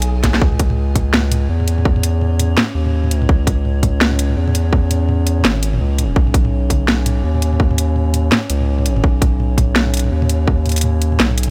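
This half-time drum and bass excerpt moves at 167 BPM in 4/4, with a swung sixteenth-note feel that gives its tense, spacious mood a loping push in C# minor. A drum fill arrives at 0.2 seconds. The layered, overdriven drum kit sits up front with a cracking snare, bright hi-hats and toms, while a hard-clipped electronic kick drives hard from 0.2 to 10.6 seconds. Underneath, a saturated sub bass holds deep, thick sine tones between G#1 and E2, sustained and prominent in the mix. A metallic, inharmonic FM drone hovers much lower in level, eerie and warbling with a vintage, mellow character, its slow attack and long release smeared by chorus and its own reverb. The harmony rests on C#m before shifting to B at 6.2 seconds, all in a dry, close-sounding mix.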